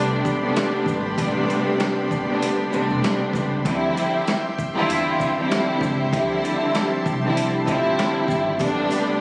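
Boom-bap hip-hop at 97 BPM in A minor, with a swung 16th feel and a tough, reflective mood, moving between Am11 and Dm11 in a short cut from a longer piece. A bowed symphonic string section with vibrato sits up front, while a lush, detuned sawtooth pad with chorus shimmers in the background. Beneath them, a woody pizzicato upright bass and a gritty sampler-style drum kit (thumpy kick, snare, rim click, hi-hat and shaker) carry the groove, and faint sleigh bells jingle in at 8.6 seconds, all coloured by vinyl crackle, compression, moderate studio reverb and the roomy sound of a phone recording.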